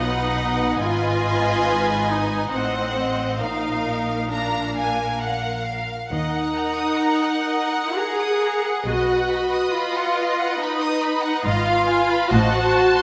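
A rich, reverberant scoring-stage sound, with a 1.9-second decay, surrounds this solemn, elegiac excerpt from a slow romantic movement for string orchestra in Eb minor. It moves in a rubato 3/4 at roughly 61-72 BPM, and all five sections play throughout the 13 seconds. A focused, close violin section carries the melody while a second violin line, lush with a smooth top, spans higher from Bb4 to Eb6. The viola section sits up front and is the most prominent voice in the blend, giving an even, vibrato-laden accompaniment. Beneath them, the cellos and double basses share the bass, the cellos rich and focused and the basses warm and smooth. The harmony turns from B through Fm7b5/Ab, Adim7 and Bb to Ebm, then circles back through B, Fm7b5/Ab and Adim7, and this gives the passage a mournful, searching quality.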